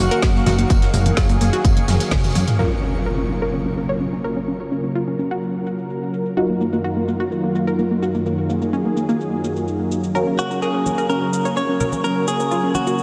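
A hopeful, euphoric stretch of progressive house in F# major at 127 BPM opens on a lush, warbling unison pad and a round analog pluck arpeggio, both pumping against the sidechain, while a clean, direct-recorded electric guitar picks a short melody with subtle chorus and tape echo. Beneath them, a punchy, funky analog bass with tube saturation, a tape-warm electronic kick up front, background congas, a distant hall-sized acoustic kit and a twinkling granular shimmer drive the opening, with a smooth-hatted, woody-snared deep house kit joining at 0.1 seconds. A drum fill leads into an electronic impact at 2.6 seconds, where the kick, bass, arena kit and granular sparkle drop away and a detuned supersaw stab enters in the background through a low-pass filter and tape echo. From there, filter sweeps move across the deep house drums, the pluck and the pad as the harmony alternates between D#madd9/F# and F#maj7. 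The guitar and congas return near the end, all of it bathed in a vast, dreamy ambient reverb with an 8.2-second tail.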